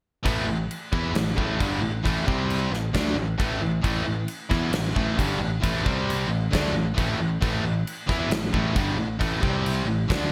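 Hard rock at 134 BPM in A minor, this driving, menacing excerpt pairs a bright, up-front overdriven electric guitar riff with a second biting overdriven guitar set back in the mix, a growly, direct picked electric bass and a gated 80s drum kit with a fat snare, tight kick and crash cymbal in a polished, airy stone room, all shifting between A5 and C5 power chords under a bright 1980s-style digital production with light reverb.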